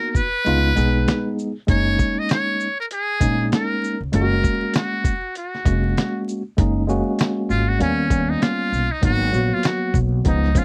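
Relaxed and cool, this short cut of jazz-hop at 98 BPM in F# major rides a swung 16th-note feel in 4/4, sounding like a piece of something longer. A barky tine electric piano sits up front from the start, clean through its built-in speakers, laying chords that move from C#9 to F#69 and later through D#7b13 to G#m7. A dusty, sampler-style drum kit arrives at 0.1 seconds with a thumpy kick, fat snare, hi-hat and shaker, gritty and compressed as if re-recorded in a small room, while a woody, dark pizzicato upright bass joins at 0.5 seconds. The trumpet with a metal mute carries the melody throughout, buzzy and thin with breathy vibrato and scooped notes, and takes a jazz-style solo from 6.6 seconds as the second section begins. The dry, close 1970s-style studio sound has little reverb and a layer of vinyl crackle.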